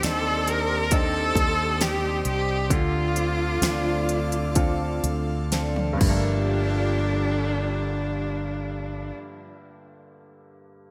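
This melancholic, heartbroken pop ballad fragment opens with the full band together. A smooth, bowed solo cello carries the melody up front with vibrato and a touch of delay, over a clear concert grand piano accompaniment with deep bass. Beneath them sit a round, amped fretless electric bass with analog chorus and a punchy electronic pop drum kit with a fat snare, crisp hats and gated reverb. Further back, a woody fingerpicked steel-string acoustic guitar with old strings plays arpeggios, while an airy, breathy synth pad with chorus holds slow-attack sustained chords. The music slows through its opening stretch, and a drum fill from 5.5 seconds leads into a new section at 6.5 seconds. The cello, pad and bass stop at 9.1 seconds, the guitar soon after, leaving the piano alone in a lush hall reverb that suits the bright 1980s-style digital production.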